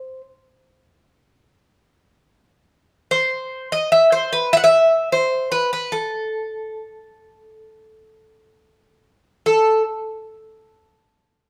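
In free time that gradually speeds up, this melancholic, wistful Greek folk fragment in A minor, tuned to A4 = 439 Hz, is carried by a solo acoustic bouzouki from 0.0 to 9.8 seconds. The picked double strings sound bright and metallic, with some octave-doubled courses, and sit up front in a wet, large studio reverb. A new section begins at 9.5 seconds, shortly before the bouzouki falls silent, as this brief cut from a longer piece closes.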